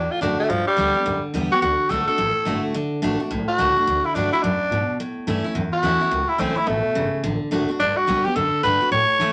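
A raspy, gritty tenor saxophone takes a punchy solo from the very start, sitting up front over a bright, full-bodied picked acoustic guitar and a woody, thumpy pizzicato upright bass in this retro, rollicking rockabilly excerpt. The band swings at a brisk 214 BPM in D major, moving through D, G and A chords across its 9.3 seconds. The saxophone sounds clear, with a moderate studio reverb giving the trio a touch of room.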